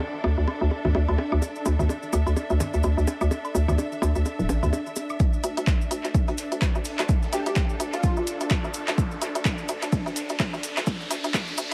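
An echo-heavy, lightly reverberant mix with a high-pass filter frames this quirky, sparse minimal techno cut at 127 BPM in 4/4 with a swung 16th-note feel. It opens on a hollow, bouncy FM bass up front, distant lush bowed strings and a tense swarming drone in the background, all three pumping with sidechain, alongside tape-echoed electronic bongos, woodblock, cowbell and congas, a grainy cabasa from 1.4 s, and a downlifter and riser. At 5.2 s a build-up begins: the hand percussion stops, and an overdriven, punchy analog kick arrives with a drum machine's handclaps and hi-hat in dub echo and a very quiet, gritty sampler-style kit of hi-hat, shaker and snare, under a filter sweep and riser, while at 7.3 s an airy, dreamy chorused lead floats briefly through.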